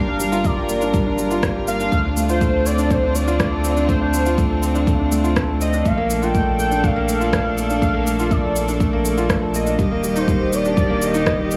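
A felt-muted upright piano opens this short cut from a longer piece of piano and strings electronica together with a velvety synth lead, a string quartet and a round analog bass, its soft, intimate riff sitting up front with tape echo. The mood is tender and luminous, moving in a straight four-beat feel through Gm7, Dm7, Bbmaj7 and Ebmaj7. The lead carries the melody in a smooth, chorused tone with vibrato and tape echo, while the bowed quartet, one player per line, holds sustained chamber chords that pump against the sidechain. Underneath, the detuned, dark bass also pumps with the sidechain as it sustains the low end. An electronic shaker and rim click enter at 0.2 seconds and a deep, layered electronic kick at 0.4 seconds, both set in a small room reverb, and the whole mix sits in a light studio reverb.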